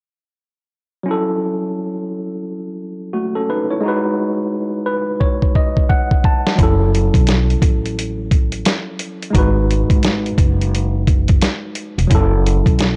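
A worn, slightly out-of-tune tine electric piano opens this dark, moody boom-bap hip-hop excerpt alone, lightly overdriven and colored by cassette tape as it moves between F#m7 and G#m7 with a swung feel, then plays a fill from 4.5 seconds. At 5.2 seconds a compressed, sampler-style drum kit arrives with its own fill, bringing a thumpy kick, medium-tuned snare and hi-hat up front. At 6.6 seconds a woody, plucked upright bass with gut strings and transformer saturation joins, all set in a dry, gritty recording.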